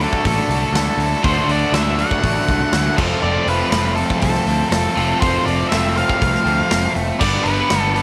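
A dark, fuzzed-out lead guitar carries the melody from the first second of this driving, confident classic rock clip, its distorted tone trailed by a slapback echo. Behind it, three overdriven guitars play riffs: one biting and double-tracked, one crunchy and bright, and one from a semi-hollow body. A picked electric bass with a warm, direct-and-amped tone and a big, natural acoustic kit with a punchy kick, crash, hi-hat and medium-tuned snare sit underneath. The chords move from D to F at 3.0 seconds and reach G at 7.2 seconds, all in a spring-reverb space with a small-room feel.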